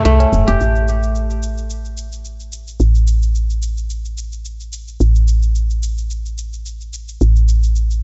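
Organic downtempo with an earthy, mystical mood and a lightly swung sixteenth-note feel, opening on an Am7 chord as a bright, crisp fingerpicked kora plays ringing arpeggios through a digital delay until 2.0 s. Up front, a woody, soft, round FM bass with a fast attack and quick decay anchors the low end, while smooth electronic hi-hats and cabasa sit low in a small room reverb. A low-tuned, ringing tabla adds a brief, close and dry accent in the background from 0.2 to 0.6 s, all within a dark production under light reverb.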